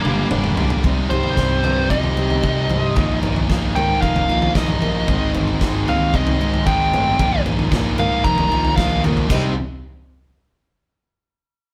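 Angsty and dark, this short excerpt of quiet-loud alternative rock moves at 114 BPM in a straight 4/4 feel in C minor, played by a band together in one stone-walled room with a moderate reverb. After a drum fill on the big, up-front kit, with its punchy kick, medium-tuned snare, toms and crash, a biting, overdriven lead guitar takes a solo from 0.8 seconds, its melody ranging from Bb3 to Bb5 at the front of the mix. Beneath it, two thick fuzz guitars play a riff, one bright and one darker and set back, while a round, overdriven fuzz bass sits in the background, fingered from F1 to C3. A bright, boxy acoustic archtop guitar picks arpeggios behind the band from 0.8 seconds. The chords move from Cm through Bbsus4 and Ab, and a second drum fill leads into a C5 power chord at 9.3 seconds as a new section begins.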